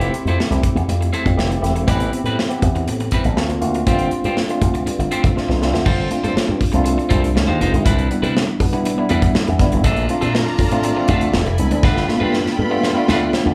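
Set in a moderately reverberant large room with the band playing live together, this upbeat, urban slice of polished 1980s jazz-funk pop moves at 120 BPM in a straight 4/4, carried by an up-front studio drum kit with crash, hi-hat, medium-tuned snare, punchy kick and fills at 5.4 and 11.8 seconds, a bright slap bass through an envelope filter, a worn, slightly out-of-tune tine electric piano with light overdrive comping through chords like Fmaj7, Am9 and Dbmaj9, and a picked, compressed electric guitar riff at the edge of break-up, before a lush, bowed string section with vibrato adds sustained chords from 9.8 seconds.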